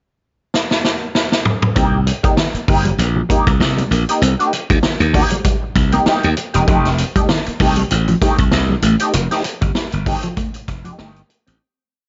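A small room ambience with a muffled high end frames this sly, hypnotic funk piece in C dorian at 98 BPM, with a lightly swung sixteenth-note feel. A vintage acoustic drum kit, with a punchy kick and a rolled-off top, opens with a fill at 0.5 seconds; at 1.8 seconds a bright, growly slap bass joins with a syncopated riff and muted ghost notes, alongside a clean, dark rhythm guitar scratching sixteenths through a wah and a compressed background guitar playing a muted single-note riff with lush chorus, all over Cm7 and F9. The drums and bass sit up front, and the groove fades out from 9.1 seconds.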